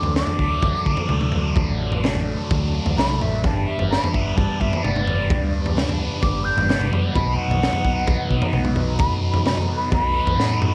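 A trippy, hypnotic psychedelic rock excerpt at 129 BPM opens with an airy, expressive jazz flute soloing through tape echo, set distant over a thick, double-tracked fuzz guitar riff with a phaser, round hollow-body bass and a crunchy breakbeat kit with a punchy kick and high-tuned snare. A vintage combo organ with heavy vibrato holds clean chords in the background as the harmony moves from D to G to B, while the gritty, saturated drums sit up front in a small room with a rolled-off top. A drum fill arrives at 10.4 seconds, just before the clip ends.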